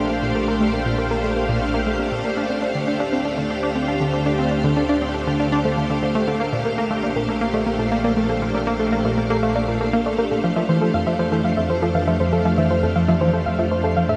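Ambient, sequencer-driven space music at 119 BPM in Bb major, cosmic and expansive, cut from a longer piece and moving through Bbmaj7, Dm7 and Fmaj7 chords. A lush, bright vintage string machine holds sustained chords up front, while a tight, driving sawtooth synth riff with detuned chorus and delay pushes the pulse beneath it. A soft, round, slightly nasal pluck plays dark arpeggios in the background with cassette-tape colour and delay, fading in across the whole 14.2 seconds, and an evolving analog drone carries the bass, all set in a huge, wet reverb.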